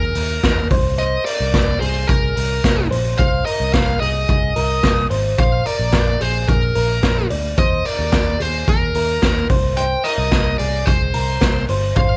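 A dark, overdriven lead guitar carries the melody up front over a bright, twangy twelve-string's clean arpeggios, a round, foam-muted picked bass and a gritty, boomy garage drum kit of kick, snare and hi-hat, giving this short cut from a longer jangly indie pop piece a youthful, nostalgic mood in a lightly reverberant, dark production.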